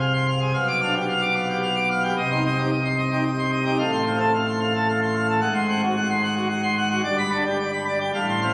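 Classical organ toccata in 3/4 at 111 BPM, majestic and jubilant, where a solo pipe organ on full plenum with mixtures sounds brilliant and up front in romantic voicing across G1 to D6, moving through Fm/C, G7/B, Cm, F/A and Ab7 to land on G at 7.0 seconds, all bathed in a wet church reverb with a 3.0-second decay in this 8.5-second phone recording cut from a longer piece, with added studio reverb and compression.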